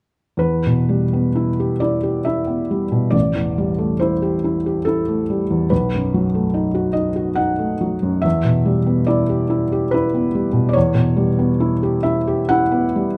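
Yearning and melancholic, this romantic classical nocturne unfolds in E minor at a rubato pace of 61-74 BPM in 3/4, a short cut from a longer piece. A felt-muted upright piano plays alone from 0.4 to 13.2 seconds, its soft, mellow and intimate tone sitting up front with audible action noise, moving through Em, Am7 and B7 before settling back on Em at 8.2 seconds. Close, detailed microphones and light reverb capture the piano's smooth, vintage character.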